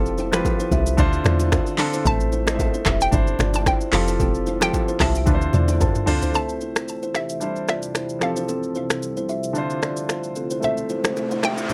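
A hollow, detuned square-wave pluck with chorus and delay carries the melody over polished grand piano chords and a round, dark log drum bass in this mellow, sultry afrobeats excerpt. An up-front electronic kit of deep kick, metallic hi-hats, snaps, claps, rim clicks, shaker and toms, roughened by 12-bit sampler grit, joins a woody, ringing kalimba riff with delay and very quiet, distant bongos and congas. During drum and piano fills, the log drum bass and hand drums stop at 5.9 seconds, and a moody, wave-folded ambient pad with chorus and sidechain pumping then enters on sustained chords, before the hand drums return and an electronic riser closes the cut from 10.9 seconds.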